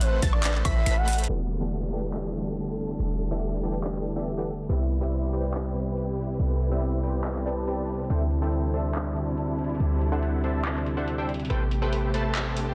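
Bittersweet and lush, this future bass passage moves at 141 BPM in a half-time feel in E minor. It opens on a drop where a soft, round octave-layered synth lead with chorus and dub echo and a detuned unison pluck sit over a brief, punchy electronic kick. From 1.3 seconds a mellow tine electric piano with phaser and a dark, bowed symphonic string section carrying 12-bit sampler grit enter over chords from Em11 through Cmaj7 and D9sus4, while a filtered supersaw stab riff, a deep, boomy 808-style bass and a trap drum kit with overdriven metallic hats run throughout under a filter sweep, with sidechain pumping, very quiet downlifter and riser effects, light reverb and a dense, heavily limited master.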